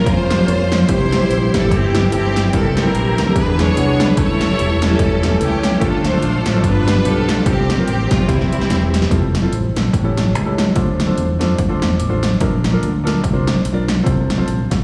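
A bright, lush string section carries the melody up front with intense vibrato and slapback echo in this reverent, soulful uptempo gospel cut with a swung feel, backed by a very quiet tonewheel organ with key click and slow rotary sustaining chords. A round, punchy fingered electric bass and overdriven 80s electronic pad drums with a gated snare and metallic hats drive the groove, while a clear, intimate grand piano with audible action noise accompanies throughout. After a drum fill at 8.3 seconds, the strings and organ stop at 9.1 seconds, leaving piano, bass and drums, and the piano adds a fill at 11.8 seconds; the mix sits in light reverb with the feel of a live gig heard through the venue's PA.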